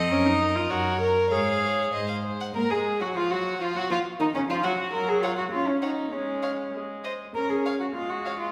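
The viola sits up front with a light vibrato, carrying the accompaniment beneath a quick, restless classical-period movement for string quartet that moves at 100 BPM in 2/4 with a rubato feel. The cello, also up front, supplies a warm bass line, while the first violin sings the melody in a dark, nasal voice that sounds more distant. The second violin weaves a rich, close second line through the same register as the melody. All four players bow gut strings in period style, giving the ensemble a reedy edge and a stormy mood. The harmony centres on Gb, shifts to a Gbmaj9 as a new section begins at 2.6 seconds, and briefly drops out before settling on Db near 7.3 seconds. A wet recital-hall reverb surrounds the quartet in this short passage cut from a longer piece.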